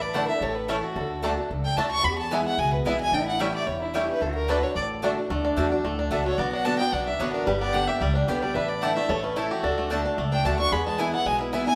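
Joyful and driving, this bluegrass excerpt is led up front by a dark, close fiddle played sul tasto with light vibrato and portamento, while a mellow, nasal lap resonator guitar played with slide and fingerpicks adds a second line in the background. Beneath them, a boxy, ladder-braced acoustic guitar on old strings picks the accompaniment, a thumpy pizzicato upright bass anchors the low end, a bright mandolin with double strings adds stabs, and a twangy, percussive banjo plays arpeggios. The whole band plays live together in a stone room whose wet reverb gives the sound a resonant space.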